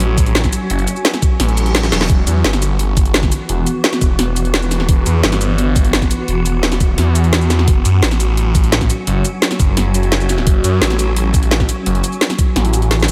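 A straight 172 BPM drum and bass groove in 4/4 drives this dark, futuristic excerpt, with an overdriven kit of woody snare, bright hi-hats and shaker up front, a knocking electronic kick from 0.2 s, a thick, swirling phased saw bass saturated beneath, a swarming, wave-folded drone pumping through F#m and Em chords in its own reverb, a reverse cymbal in the background at 1.5 s, and drum fills at 1.8 and 12.9 s, all in a light digital ambience.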